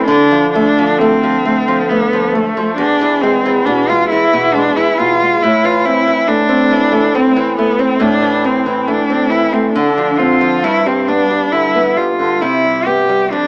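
A rich, bowed cello sings an expressive melody with vibrato, soft attacks and portamento over fingerpicked nylon-string guitar accompaniment from the first moment of this melancholic, elegiac romantic duo in A minor. It moves in a rubato 3/4 at 68 BPM through chords from Dm and E to Am, Dm7, G and Cmaj7, with both players up front in a moderate recital hall reverb. The whole passage, an excerpt cut from a longer piece, is coloured by the worn, warbling pitch drift and small-speaker sound of old cassette tape.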